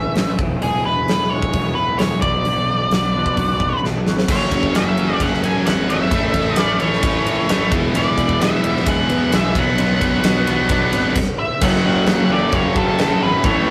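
Up front, a dark octave-fuzz lead guitar carries the melody across this cathartic, angsty excerpt of quiet-loud alternative rock in F# minor at 131 BPM, while a huge arena drum kit with a fat snare, punchy kick and bright cymbals pumps in its hall-like space. From the start, a growly, overdriven fuzz bass sits beneath a clean, twangy electric guitar playing tremolo-tinged arpeggios in the background. After a drum fill, a scooped high-gain guitar and a very quiet, bright fuzz guitar crash in with riffs at 4.3 seconds over chords moving from F#m through A and E to Bmadd9. A soft, flute-like tonewheel organ with slow rotary vibrato adds faint sustained chords from 8.0 seconds. Following a brief stop, a crunchy, double-tracked overdriven guitar joins the riffing at 11.6 seconds, and the whole take keeps the rough, small-room feel of a rehearsal-space recording.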